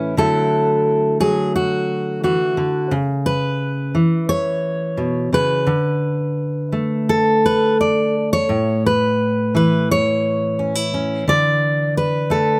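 A fingerpicked steel-string acoustic guitar with a full-bodied jumbo tone sits up front through this peaceful, warm folk excerpt, playing alone at a loose, rubato 87 BPM in 4/4 over chords moving from Dadd9 through Aadd9/C#, D5 and Aadd9 to Dsus2, captured with close, detailed microphones and light reverb.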